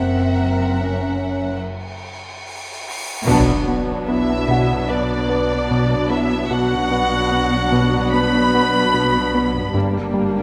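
Ominous and eerie, this slow 74 BPM suspense film-score excerpt opens on an F#7 chord with a lush, vibrato-rich violin melody up front over a darker second violin line, mellow French horn chords, warm, smooth cellos and a rich bowed double bass, then a huge, bright cymbal swell from 1.8 s crashes into an impact at 3.3 s as the music settles into B harmonic minor, where violas, a fat, detuned, wave-folded analog synth bass riff with a filter sweep, a clear solo clarinet and a dark, short-sustained vintage grand piano join before a closing turn to G minor, all bathed in wet scoring-stage reverb.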